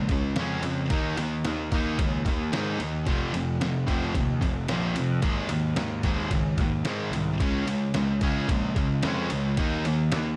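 Light reverb surrounds this aggressive, driving hard rock excerpt at 111 BPM in straight 4/4, cut from a longer piece. A bright, scooped high-gain guitar sits up front and an overdriven semi-hollow guitar sits in the background, both playing riffs over chords moving from Db through Eb5, F5 and Ab5/Eb. A growly, punchy fuzz bass pushes forward beneath a compressed, pitched-down trip hop sampler-style kit, whose thumpy kick, medium-tuned snare and ride cymbal carry a gritty, tape-warm character.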